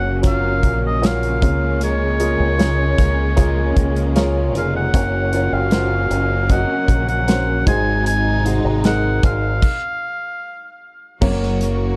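Dark, warm production in a small room frames this hopeful, emotional pop ballad, with a punchy, airy, up-front acoustic drum kit (medium-tuned snare) and a direct fingered electric bass colored by an envelope filter. Above them, a bright classical-style oboe sings the solo melody with light vibrato until 10.8 s. A present baby grand piano, a lush bowed string section holding focused sustained chords, and a woody, full-bodied steel-string acoustic guitar picking arpeggios in the background carry the harmony into a stop at 9.6 s.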